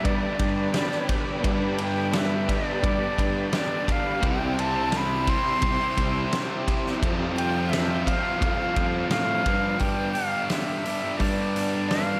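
A dreamy, reverb-soaked mix in a lush hall opens this blissful, wistful slice of shoegaze-leaning dream pop and rock, moving at a straight 86 BPM in G mixolydian. A breathy, reedy silver concert flute carries the melody from the start, close-miked and tongued with a straight tone, its phrases trailed by tape echo. Beneath it, a loose indie drum kit sits up front with a fat snare, punchy kick and dark cymbals, while a growly fuzz bass adds an overdriven, bright edge. Two picked guitars play riffs, one in the background and one very quiet: an overdriven one touched by reverse reverb and a lo-fi garage guitar. A tight, double-tracked distorted guitar joins at 4.2 s as the harmony shifts from G to C and then Fsus2. A silky analog string pad with ensemble chorus and slow attack hangs behind until 9.8 s, when the chords return to G.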